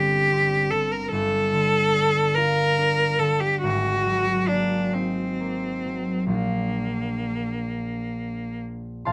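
Luminous and pastoral, this impressionist classical duo for cello and harp unfolds in Bb major at a rubato 6/8, around 43-50 BPM in dotted quarters, in a short passage cut from a longer piece. A single bowed cello sings the melody up front with a rich, even tone and smooth vibrato, ranging from Bb3 to Bb4. The concert harp's thumb-plucked, ringing accompaniment moves through Gsus4, Bbmaj7/G, Ab9 and Bb, and it sounds on alone after the cello stops at 8.6 seconds, all captured by close, detailed microphones with light reverb.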